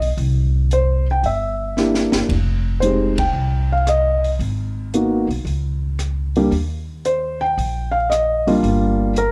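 A dark, mellow baby grand piano carries the melody over a woody pizzicato upright bass and a compact cocktail drum kit with a high-tuned snare and dark cymbals in this sophisticated, playful swinging jazz trio excerpt, where a brief drum fill at 1.8 seconds is followed by a band accent at 3.1 seconds, the piano's action noise and long sustain sitting up front in light reverb amid lossy artefacts.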